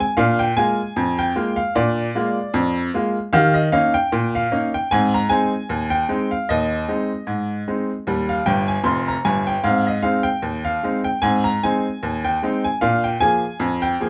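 A gently swung 2/4 at 76 BPM carries this cheerful, lively ragtime excerpt in Ab major, cut from a longer piece. A solo upright piano sits up front with a brilliant, woody tone and audible action noise, spanning F1 to C6 over a progression that moves from Bb7 through Eb7 and Ab/Eb back toward Ab. The piano plays a fill from 8.5 to 9.7 seconds, and moderate small-room reverb keeps the sound intimate.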